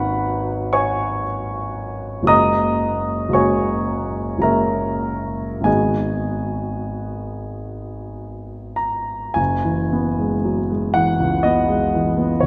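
A clear, present grand piano sits up front in a wet concert hall, its long sustain blooming into a reverb that lingers for about two seconds. This hazy, nocturnal impressionist solo piano fragment, cut from a longer piece, moves with a free rubato in 3/4 at roughly 47-63 BPM, its rich extended chords such as G#m11 and F#add9 ranging from deep E1 up to D#6. Near 9.4 seconds the music turns to a new section, settling onto an F#9sus4 before the cut at 12.5 seconds.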